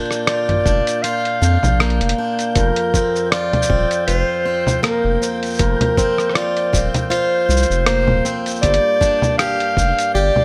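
Warm and playful, this short folktronica excerpt moves at an unhurried 79 BPM in 4/4 with a gentle swing on the sixteenths, cut from a longer piece. A picked, plugged-in acoustic guitar with a boxy tone spins arpeggios through tape echo from the start, alongside a lo-fi sampler-style kit of cabasa, congas, hi-hat and rim click that sounds pitched down, muffled and compressed, sitting up front. A classical-style solo clarinet carries the melody from 0.3 seconds, and at 0.7 seconds a round, deep analog bass with a dark, sustained tone arrives together with a thumpy electronic kick drum. In the background, a flickering, grainy granular texture hovers high with its own reverb. The harmony rests on Bb, shifts to Fsus4, and settles on Gm7 near the end, all within a lightly reverberant room.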